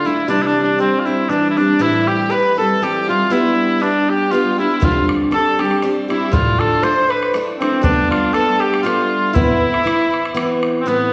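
A cor anglais with light vibrato carries the melody up front in a classical style, touched by a slapback echo, while a rich, focused fiddle plays a bowed second line in the background and a bright, picked steel-string acoustic guitar accompanies close by. This wild, driving Celtic waltz sways with a light swing, and an open, boomy bodhran joins at 4.8 seconds. The whole group sounds from further back in a wet recital hall, in a short passage cut from a longer piece.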